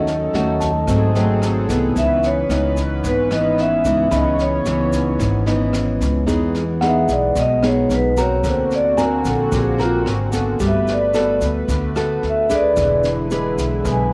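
Bossa nova in a wistful, intimate mood, heard as a short cut from a longer piece with a straight feel in 4/4. An up-front, full-bodied nylon-string guitar is fingerpicked in a classical manner with finger squeak audible, while a woody, thumpy pizzicato upright bass anchors the low end and a shimmering, retro pulse-width pad with chorus holds soft-attack sustained chords beneath. The vibraphone, played with medium mallets and its motor off, carries the melody with a metallic ring and a boxy small-room character, moving into a solo at 6.3 seconds as the harmony changes. A clean tine electric piano sits in the background from 0.6 to 10.6 seconds, and a grainy, band-limited tube shaker stays far back behind an airy, polished brush kit with a high-tuned snare, rim clicks and a boomy kick. The vibraphone, guitar, pad and electric piano carry a cassette-tape colouring, and the whole clip has light reverb and the small-room ambience of a home recording on cassette.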